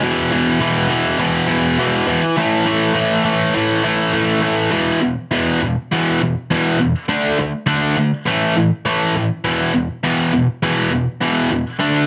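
A dense, heavily limited modern master with light reverb frames this rowdy, rebellious punk fragment, cut from a longer piece and driven at 204 BPM in a straight 4/4. A lone distorted electric guitar plays throughout, bright and overdriven, picked and double-tracked up front, ranging from E2 to D4. It moves through power chords on E, A and D, with the second section starting at 4.7 seconds and running to the end at 12.1 seconds.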